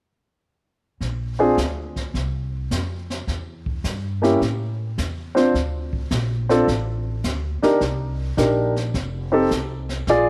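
A lilting swung 4/4 groove drives this playful jazz piano trio, with pizzicato upright bass and a brushed drum kit starting together at 1.0 seconds. The bass sits up front with a woody, growly tone, while the kit, with its high-tuned snare and boomy kick, sounds distant and roomy. At 1.4 seconds a warm baby grand piano takes the melody close to the listener, moving over changes such as Bbadd9, Em and Cm9 in a small room with light reverb, in this short cut from a longer piece.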